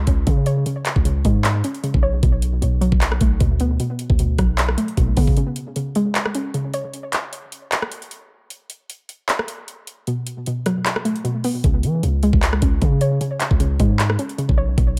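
A half-time trap beat at 153 BPM drives this dark, melancholic hip hop excerpt, its electronic kit pairing a knocking kick and metallic hi-hats with handclaps and rim clicks, all tape-warm and up front. A long, deep 808-style bass with a sine tone and fast attack decays under a hollow, bouncy square-wave pluck, detuned and filtered with chorus and tape echo, moving through chords such as Bm7 and B5. After a drum fill at 5.0 seconds the bass drops out for a break until 11.6 seconds, leaving the kit and the pluck, which fades at 6.9 seconds and returns at 10.1 seconds, in an echo-heavy digital ambience.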